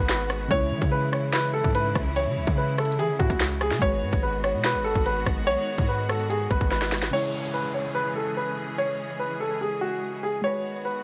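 Lightly reverberant digital ambience frames this tense, menacing drill excerpt in C# minor at 145 BPM with a half-time feel, where a dark, mellow baby grand piano carries the melody up front through a low-pass filter and delay over soft, round electric-piano-like synth keys with chorus and lush, bowed strings holding sustained chords. A hard-clipped kick, sharp snare, handclaps, rim clicks and hi-hats drive the electronic drill kit alongside a punchy, heavy 808-style bass, the harmony moving between G#m7 and C#m. After a drum fill, the drums and bass stop at 7.1 seconds, and an electronic downlifter sweeps in beneath the piano, keys and strings until 10.4 seconds.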